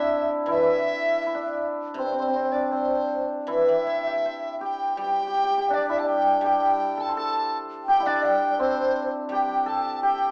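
Chinese traditional chamber music, festive and graceful in a free rubato feel, sets a mellow, buzzing large dizi melody up front beside a breathy, unsteady low xiao with vibrato, a shimmering hammered dulcimer and a silvery guzheng played with fingerpicks, all four sounding from 0.0 to 10.3 seconds in a moderate recital hall reverb with a small speaker sound, cut from a longer piece.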